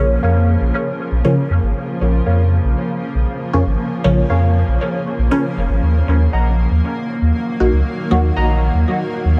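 Lightly reverberant and hazy, this nocturnal dub techno fragment, cut from a longer piece, rests on a round, sine-toned sub bass placed up front. Muted, detuned sawtooth chord stabs run through a phaser and dub echo, while a blurred granular pad with a slow attack and its own built-in reverb drifts beneath, the harmony shifting at 5.9 s. From 0.2 s a warbling, lo-fi pluck with chorus, dub echo and a noise layer hovers in the background.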